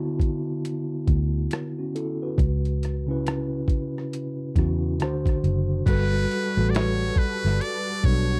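A buzzy, metal-muted trumpet enters at 5.9 seconds with scooped notes and light vibrato in jazz style, over a mellow tine electric piano, a dark, round, foam-muted fingered bass and a gritty, pitched-down boom bap kit with thumpy kick, snare, finger snaps, rim clicks, hi-hat and crash, while a lush, detuned unison pad with chorus sits in the background of this late-night, smooth R&B and neo-soul excerpt at 69 BPM with a swung 16th-note feel, moving from D69 through C#m7 and D7 to Gmaj9 in a dry, close 1970s-style studio sound.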